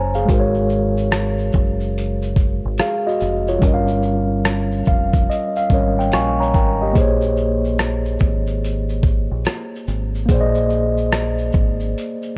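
A mellow tine electric piano and a deep, round fingered electric bass open this hazy, reflective lo-fi hip hop excerpt together, with a dusty soul sampler-style drum kit entering at 0.1 seconds. The groove sits at 72 BPM in 4/4 with a 65% swing on the sixteenths, in B-flat minor, moving from Ab9sus4 through Eb9 to Bbm9. The electric piano carries the accompaniment through a cassette tape effect and a low-pass filter, its clean, warm tone placed up front, and it plays a fill between 4.5 and 7.0 seconds. Beneath it, the dark, amped bass stays low with tube saturation, while the compressed, gritty drums bring a thumpy kick, hi-hat, rim click and shaker that sound re-recorded in a small room. The recording is dry, with little reverb, and its worn, warbling old-tape character adds a drifting pitch to the whole hazy texture.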